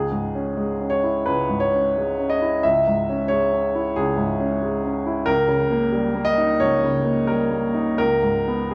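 A clear, woody upright piano sits up front in a wet recital hall, its long sustain ringing into a reverb that gives the recording the air of a church or concert hall. This brief neoclassical minimalist piece, cut from a longer work, is intimate and wistful in mood. The solo piano plays in C# minor and 4/4, moving with a rubato feel at roughly 82-94 BPM across a range from C#2 to E5. The harmony opens on C#m, shifts to D#7/C# at 5.3 s and settles on G#m/C# at 8.0 s. The piano's vintage, smooth tone and the hall's generous wash give the whole 8.7-second passage a quiet, reflective glow.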